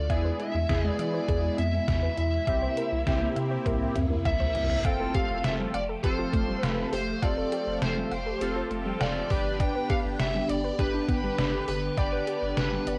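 Driving and melancholic, this synth-pop excerpt sets a smooth, overdriven lead guitar melody up front over swirling phased string-machine chords, a deep round analog bass, fat detuned synth brass, a soft pluck arpeggio with analog delay in the background and a thumpy, detuned 8-bit drum machine whose fill from 3.7 s runs beneath a reverse cymbal entering at 4.0 s and swelling into an impact at 4.8 s, all carrying a cassette home-recording character in a moderate room.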